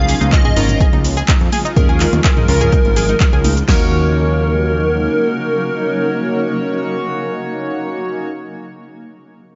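Progressive house at 125 BPM in Eb minor, this dreamy, emotional excerpt opens on a drop over a Db chord, with punchy, overdriven drums, quiet electronic congas and toms, a fat detuned sawtooth bass, a tight sequenced arpeggio, a barely audible glassy texture and a shimmering, granular ambient pad pumping beneath a catchy, bright plucky unison lead and glossy chorused polysynth stabs carrying digital delay, before the drums, percussion and arpeggio fall away around 3.7 seconds as the harmony turns to Ebm7 and the bass stops at 5.1 seconds.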